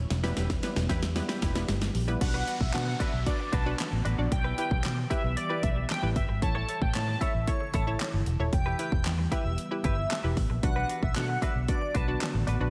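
Driving and energetic, this dance-pop excerpt opens with a drum fill building up over a very quiet ethereal pad, a dark, round muted fingered bass with sidechain pumping, a twangy clean electric guitar riff with chorus and slapback echo, and a hollow, bouncy square pluck, before the drop at 2.2 seconds brings in an airy, dreamy lead melody with tape echo and vibrato over punchy, up-front pop drums with handclaps, while a downlifter sweeps in the background.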